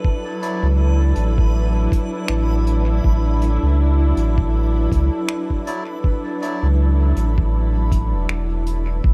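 A lightly swung 80 BPM pulse from a muffled, thumpy, pitched-down electronic kick and an acoustic brush kit with finger snaps and hi-hat steeped in dub echo carries this peaceful, spacious ambient dub fragment, where a round, sine-toned sub bass with tube saturation sits up front beneath lush, woody bowed strings holding a Dadd9/A chord, a reversed, granular swelling texture adds a dreamy haze, and reedy, nasal melodica stabs, also treated with dub echo, arrive at 0.4 and 5.7 seconds in a small, echo-heavy room.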